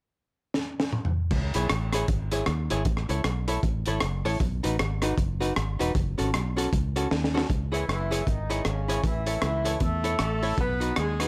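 A swung 4/4 ska groove kicks off with a crunchy, saturated breakbeat drum fill at 0.5 s, its high-tuned snare and punchy kick soon joined by a round, foam-muted fingered electric bass and a clean, hollow-body archtop guitar picking through the C#m, A, B and F#m changes, before a dark horn section in octave doubling, touched with light vibrato and slapback echo, enters at 7.7 s to carry the melody in this mischievous, energetic fragment cut from a longer piece.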